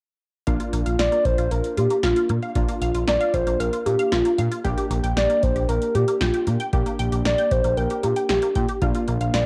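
Synth-pop with a bright yet wistful mood, this short cut from a longer piece moves at a steady, straight four-beat pulse. An electro analog drum machine supplies a deep kick, punchy snare and metallic hats, alongside a smooth gliding synth bass whose sawtooth and triangle tones carry vibrato and portamento, sitting up front in the mix. Round, detuned analog keys with chorus and a filter sweep fill in the accompaniment, while a juicy, squelchy pluck spins resonant arpeggios through phaser and tape echo. From 1.0 s a hollow, woody clarinet-like lead carries the melody as the most prominent voice, its soft square and triangle tone dressed in chorus, vibrato and tape echo. Moderate spring reverb and the character of a home cassette recording give the piece a nostalgic, lo-fi sheen as the harmony drifts from Bb to Gm/Bb and back.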